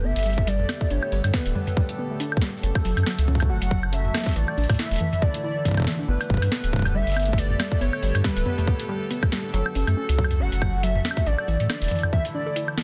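A dense, heavily limited, fairly dry mix carries this glitchy, playful IDM fragment with a light swing and a nostalgic lo-fi haze. A wave-folded, vibrato-laced lead sings the melody over a detuned sawtooth pad with chorus, phaser and slow-blooming sustained chords, while a dusty, dark pluck spins arpeggios through a filter sweep and delay. Underneath, a round sine sub bass sits up front beside a tape-warm analog drum machine with a tonal snare, metallic hats, toms and woodblock, and a tight electronic kick joins at 0.4 s.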